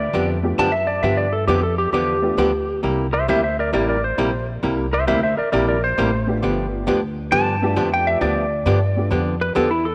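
A swung 4/4 groove drives this down-home western swing excerpt. A bright, twangy clean lap steel takes an up-front slide solo over a woody pizzicato upright bass and a dark, hollow-body archtop guitar picking out the accompaniment, as the chords move from G7 to C9 and then G9. A detuned, jangly honky-tonk upright piano sits in the background, entering at 0.4 seconds and returning at 6.3 seconds, and a wet plate reverb with a long tail adds space.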